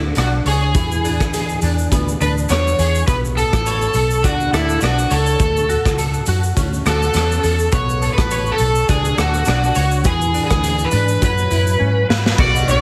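A clean, hollow-bodied semi-hollow electric guitar with a warbly, chorused drift and a dark, round, foam-muted bass open this wistful, mellow bedroom-pop excerpt in B dorian at 103 BPM, moving through chords such as Bm9, Dmaj7 and E7 with a light 16th-note swing. At 0.2 seconds an up-front, overdriven slide guitar carries the melody through tape echo, joined by a gritty, saturated garage drum kit of punchy kick, snare, rim click, shaker, hi-hat, ride and crash, which plays a fill from 11.8 to 12.4 seconds before the cut at 12.8. The mix sits in a small room with light reverb and has a heavily compressed, radio-like sound.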